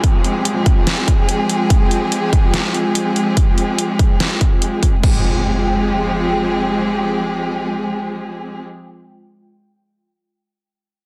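A half-time 144 BPM groove with a lightly swung sixteenth feel drives this menacing, aggressive stretch of heavy wobble dubstep in F minor, as a punchy, up-front electronic kick and a drum kit of deep snare, hi-hat and crash cymbal play until 5.1 seconds, both carrying the boom of a large room. Above them, a rich chamber string section sustains bowed chords with focused vibrato, pumping against the kick, while an airy, breathy pad with a detuned, chorused shimmer and a slow attack breathes through the full length. An electronic downlifter and impact mark the opening and return at 5.0 seconds, all set in a moderate digital reverb within a dense, heavily limited modern master.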